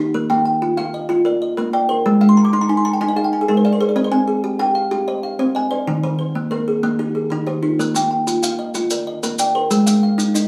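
Southern African traditional music in an mbira-style interlocking cycle, rippling and hypnotic, moving at 125 BPM in a straight 12/8 in B-flat mixolydian, cut from a longer piece. Two kalimbas play arpeggios together from the start: one has a bright, woody solid-board tone plucked with a thumbnail and sits mid-forward, while the other has an airy hollow-box sound plucked with the thumb, and a kalimba fill stands out between 2.1 and 4.0 seconds as the chords cycle through Bb, Ab, Cm and Eb. Grainy, mellow maracas, close and dry, join at 7.8 seconds, and the band plays live in one small room with a wet studio reverb.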